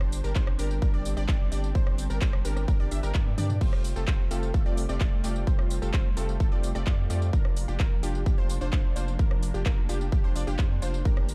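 Dark, warm production with digital ambience frames this anthemic, uplifting festival progressive house drop, cut from a longer piece, where a punchy, up-front electronic kick entering at 0.4 s and a crisp-hatted big-room dance kit, with a drum fill at 3.3 s, drive a deep, saturated sub bass, a detuned supersaw stab riff with digital delay, a lush, bright unison pluck arpeggio and an intimate bowed chamber string section holding sustained chords in the background, as sidechain pumping runs through the bass, stab, pluck and strings over chords moving from Csus2/G to Fadd9 and Bb/F.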